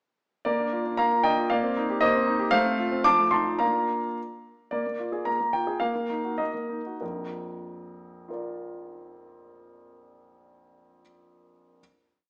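A concert grand piano opens this short, complete classical-period sonatina at 0.4 seconds, its tone warm, smooth and intimate, with a vintage character, deep bass and audible action noise. The mood is elegant and cheerful, in B-flat major and 2/4 time, moving between 94 and 117 BPM with a rubato feel and tuned to A4 = 443 Hz. A single-line melody and a tune in thirds sit up front over a broken-chord bass, touching a passing C minor seventh, an F seventh and, in the coda, a darker E-flat minor colour. The music slows from 4.2 seconds through the coda, settling on a final B-flat chord at 7.0 seconds. The piano rings in a wet recital-hall reverb with a small-speaker sound.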